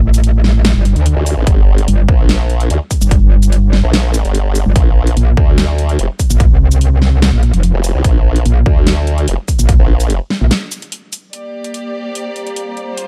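A half-time 4/4 pulse at 146 BPM drives this heavy, chaotic wobble dubstep drop in G minor, where an aggressive, metallic FM wobble bass and a formant-swept pulse-wave wobble bass, both chorused and overdriven, churn over Gm and Bb beneath a punchy electronic kick and a tape-toned drum kit with a huge snare, shaker and hi-hats, until a short break at 10.5 seconds gives way at 11.3 seconds to a rich, bowed string section with vibrato, soon joined by a warbling, lo-fi, nostalgic pad, both with sidechain pumping, all set in dark digital ambience.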